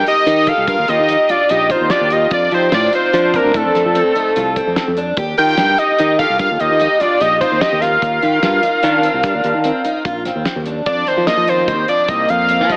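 Progressive instrumental band music in a straight 7/4 at 147 BPM, driving and bright, where a fat, detuned sawtooth analog lead carries the melody up front from A4 to G5 over a breathy, whispered alto saxophone second line with slapback echo, shimmering octave-doubled twelve-string acoustic guitar arpeggios in the background, a growly fingered electric bass, and a damped 70s drum kit with a tight kick entering at 0.1 s, all in a lush hall reverb with a big arena yet AM radio sound, moving from Ebadd9 and F to an F7sus4 change at 10.9 s in this excerpt cut from a longer piece.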